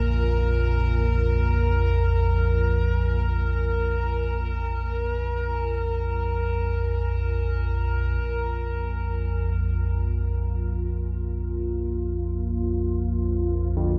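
Ominous, desolate ambient in free time, cut from a longer piece, where an up-front rumbling drone anchors a deep, moody sawtooth pad that fades through its opening stretch, while an eerie, metallic FM drone hangs above until 8.3 seconds and dark bronze carillon bells ring tape-echoed arpeggios in the background before dropping out at 4.1 seconds and briefly returning at 13.8, all bathed in huge reverb and the warbling pitch drift of worn cassette tape.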